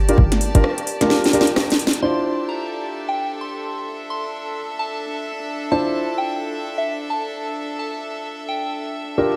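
UK garage in a two-step vein, this short, skippy passage from a longer piece carries a late-night mood with a swung sixteenth-note feel. A rich chamber string section supplies a bowed, earthy texture with light vibrato and sidechain pumping, while a dark concert grand piano sits up front with mellow stabs trailed by analog delay. The house drum kit is layered and overdriven, pairing a cracking snare with metallic, filtered hats and rim clicks, and a drum fill runs from 1.1 to 2.0 seconds. A short, punchy 808-style bass lands a single tight hit near the start, and from 2.0 seconds a soft FM synth bell carries a gentle, pure melody colored by chorus, phaser and delay as the harmony moves from Gm7 to Dm9. Plate reverb gives the whole mix a dreamy, soaked ambience.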